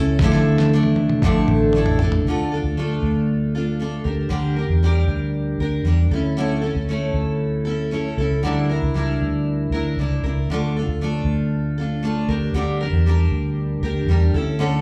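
Wistful and reflective, this acoustic pop fragment opens with a gritty, overdriven sampler-style drum fill of thumpy kick, fat snare and toms that runs from 0.2 to 2.2 seconds before dropping away. Up front, a full-bodied dreadnought steel-string guitar is picked in double-tracked layers with a slapback echo, while a dark, round, foam-muted electric bass gives a punchy low end. The chords move from Dmadd9 through Gm/D, A/D and Edim, and the whole thing sounds like a live club gig heard through the venue's PA.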